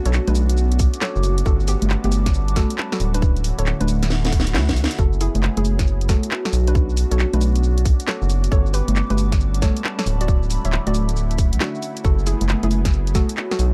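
A dark, lightly reverberant production carries this bouncy, skippy two-step UK garage passage, cut from a longer piece and swung on the sixteenths. Sustained chords from a smooth vintage analog pad and a nostalgic, lo-fi, warbling texture from a tape-like pad pump against the beat beneath a hollow square pluck melody treated with chorus and delay, while an up-front, rubbery square bass with tube saturation anchors the low end. A garage kit of congas, handclaps, hi-hat, shaker and a cracking snare drives the groove, a tight electronic kick joins at 0.8 seconds, and a drum fill arrives around 4.1 seconds alongside a faint background swell.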